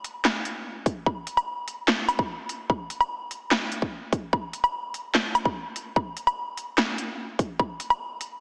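Dubstep at 147 BPM in a half-time 4/4 feel, this heavy, aggressive drum excerpt runs about 8 seconds, cut from a longer piece. A layered big-room dance kit of handclaps, crisp hi-hat, punchy snare and woodblock plays throughout with a tape-warm, up-front sound, while an electronic kick drum enters at 0.9 seconds and stops at 7.7 seconds. The mix carries a lush hall reverb and a heavily compressed, small-speaker radio sound.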